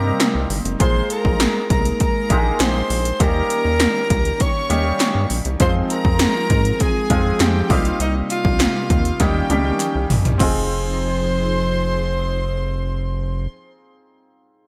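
Urgent and dramatic, this 1980s-style pop excerpt in F minor moves at 100 BPM, with a breathy, whispered alto saxophone carrying the melody over a bright chamber violin section's delayed second line, a clear baby grand piano with lush chorus, mellow organ-like ensemble strings in the background and a rubbery, nasal square-wave bass up front, while punchy, overdriven electronic pad drums with gated snare and toms and metallic hats drive alongside very quiet crisp handclaps until a drum fill at 9.2 seconds leads into a new section at 10.4 seconds.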